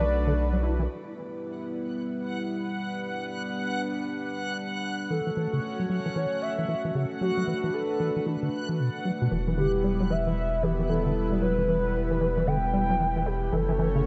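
IDM with a cerebral, glitchy mood and a swung feel, built on a smooth, mellow analog pad that sustains throughout with chorus and shimmer reverb, while a reversed, dreamy swelling texture drifts from 1.9 to 9.3 seconds, a rubbery acid bass with saturated sampler grit and tape echo returns alongside a warbling, nostalgic lead full of vibrato and portamento at 5.1 seconds, and a dark, round analog bass rejoins at 9.3 seconds, all set in a lush hall reverb with a soft-edged top end.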